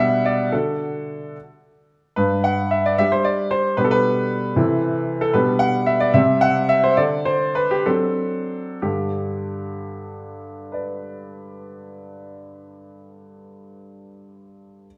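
This is a cheerful, graceful classical-period piano sonatina, cut from a longer piece and played in a flowing 6/8 with a supple rubato feel. A solo concert grand carries everything, its tone clear and open, with a deep bass and a long sustain. The piano sits up front, set in a wet recital hall whose reverb adds a gentle bloom around it. The harmony moves through familiar, bright territory, from G/B and D through Am/C and C5 toward a D7. The pace broadens from 4.6 to 8.8 seconds, and the phrase resolves on G at 8.8 seconds, where a new section begins.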